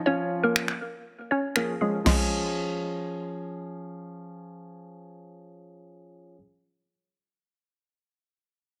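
Summery and upbeat, this short dance-pop excerpt moves at 120 BPM in a straight 4/4 in Db major, built around a single Db chord. A hollow square pluck carries the melody from Ab3 to Db5, its bouncy, warbling, detuned tone touched with a noise layer and wave-folding, softened by a low-pass filter and spread by chorus and digital delay before it stops at 3.5 seconds. Underneath, a concert grand piano plays accompaniment between F3 and Ab4, intimate and polished with deep bass, audible action noise and long sustain, and it continues alone until 6.4 seconds. A layered electronic pop kit sits up front from 0.6 to 2.2 seconds, adding a crash cymbal, finger snaps and toms around a fat, overdriven snare with soft clipping. Light reverb and digital ambience frame the parts, and the master is dense and heavily limited, moving from an opening section into a second one at 2.1 seconds.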